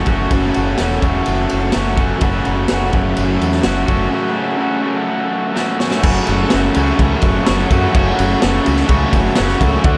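A raw, double-tracked electric guitar opens with a bright, overdriven riff, picked up front in F# minor, while a growling fingered bass with overdrive and tube saturation and a very quiet, buzzy vintage combo organ holding sustained chords enter with it. A fraction of a second later, the acoustic drum kit joins, and its small, pumping room, boomy kick, medium-tuned snare and dark ride and crash cymbals sound saturated and rolled off at the top. This gritty, menacing garage rock cut from a longer piece drives at 126 BPM in a straight 4/4, anchored on an F# minor chord. The punchy bass sits low and warm beneath the riff, while light reverb gives the whole mix a touch of space. A drum fill at 5.6 seconds carries the music into a new section at 6.0 seconds, which runs until the excerpt ends at 10.0 seconds.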